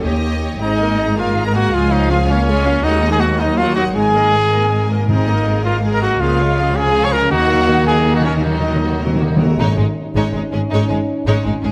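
A bright, up-front solo trumpet with light vibrato punches out stabs from 0.6 s in this heroic, soaring adventure-film cue in 6/8, cut from a longer piece. Beneath it, a focused violin section carries the lush melody, while a soft-attack second violin line, an intense viola accompaniment, mellow French horn chords, portamento-laced cellos and a smooth, distant double bass section fill out the orchestra. Timpani struck with hard mallets join at 5.1 s and play a fill before the music rises into a build-up at 9.6 s, heard within a moderate scoring-stage reverb.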